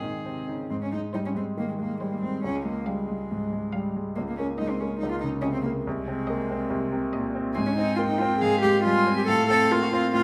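An up-front, nasal cello played sul tasto carries the second line of this urgent, dramatic classical-period piano trio movement at a quick 140 BPM in Ab major, beneath a floating, smooth-topped violin melody and a clear concert grand piano accompaniment with deep bass, all three playing throughout a 10.2-second passage cut from a longer piece and set in a wet recital-hall reverb.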